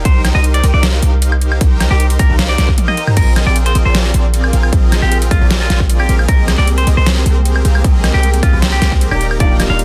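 A dense, heavily limited and dry mix carries this bright, playful future bass excerpt at 154 BPM in a half-time feel, moving from Cm7 through Bb9sus4 and Abmaj9/C to Ebmaj7. A fat, detuned sawtooth polysynth riff with chorus, a twangy clean electric guitar melody with delay and a deep, boomy 808-style bass each pump with sidechain, while a punchy overdriven kick and an overdriven dubstep kit of deep snare, metallic hats, crash, toms and woodblock drive the drop, with a drum fill at 2.8 seconds. A very quiet, shimmering granular pad drifts in at 4.3 seconds, and a boxy concert grand piano with long sustain enters only at 9.4 seconds.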